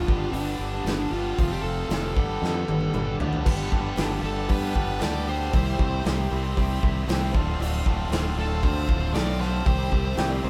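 Recorded with light reverb as a band playing live in one room, this gritty, swaggering classic rock excerpt rides a punchy, up-front drum kit with bright cymbals, a growly fingered bass and a double-tracked overdriven electric guitar riff under a compressed fuzz lead melody, while a shimmering twelve-string acoustic, a jangly tack piano and a very quiet tonewheel organ with key click and slow rotary fill out chords moving from G through Gadd9, C and Dm7 after a drum fill at 2.4 seconds, with a dark octave-fuzz second guitar line entering at 4.2 seconds and a clean lap steel with slide and volume swells joining in the background at 6.1 seconds.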